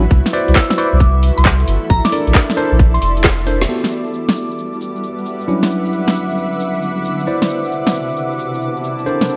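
Vinyl crackle opens this sunny, soulful two-step garage excerpt, along with a breathy, detuned pad with pumping chorus, a cloudy, evolving granular pad, a worn, slightly out-of-tune tine electric piano playing filtered stabs with delay, and a round, deep sub bass. A tight, layered electronic kick and an up-front garage kit of woody snare, metallic hats, claps and shaker bring a swung groove, while a pure, mellow FM bell melody floats above from 0.6 to 3.1 seconds. The kick drops out at 3.4 seconds, and after a drum fill and band accent the bass follows at 3.7 seconds, leaving the pads, drums and a filter sweep on the electric piano over rich ninth chords in light digital ambience.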